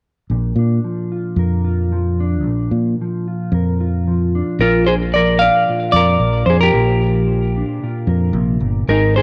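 Heard through a moderate echo chamber reverb with a 2.5-second tail, this excerpt from a longer piece has a roomy, spacious sound. It is highlife guitar band music at 112 BPM in a straight 4/4, set in Bb mixolydian and opening on a Bb chord at 0.3 s. A mellow electric guitar, dark and compressed and coloured by analog chorus, plays the accompaniment throughout, beneath a fingered electric bass that sits up front with a round, direct, amped tone. At 4.6 s a semi-hollow electric guitar takes up the melody, its clean hollow-body voice carried by tape echo and placed forward in the mix. The mood is warm and joyful from start to finish.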